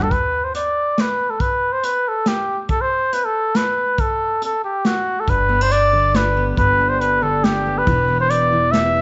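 Hopeful and uplifting, this short indie folk excerpt in G major moves at 139 BPM in a straight 3/4, with a warm, up-front trumpet carrying the melody in a smooth, classical style with light vibrato and a slapback echo, over a distant, roomy acoustic drum kit played with bundle sticks, its punchy kick and medium-tuned snare sitting beside hi-hat. At 5.3 seconds the arrangement builds as a woody, dark pizzicato upright bass, heard only as a brief touch at the very start, returns alongside a full-bodied, fingerpicked steel-string jumbo guitar on a G chord, shifting to E minor at 7.9 seconds. The whole is set in a small room with light reverb and a soft, rounded top end.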